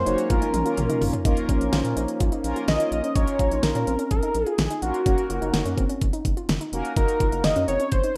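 A rough home-demo sound with moderate room reverb carries this nocturnal, driving synth-pop fragment, where a thick, detuned unison lead with delay sings up front over a knocking, tape-warm electronic drum kit that opens with a fill at 0.3 seconds, a rubbery square bass, bold chorused analog synth brass, soft round delayed plucks playing arpeggios, and an evolving, resonant pad that holds chords only until 3.1 seconds.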